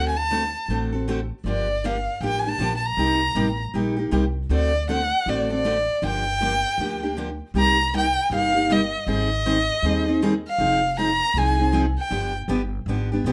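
A swung 4/4 pulse at 158 BPM drives this fiery, virtuosic acoustic jazz manouche piece in G minor, shifting to C minor at 7.6 s, with a close, bowed solo violin carrying the melody up front with expressive vibrato, portamento and plate reverb until 12.3 s, over picked steel-string acoustic guitar accompaniment with audible finger squeaks and a woody, thumpy pizzicato upright bass on gut strings, set in a moderate small-room ambience.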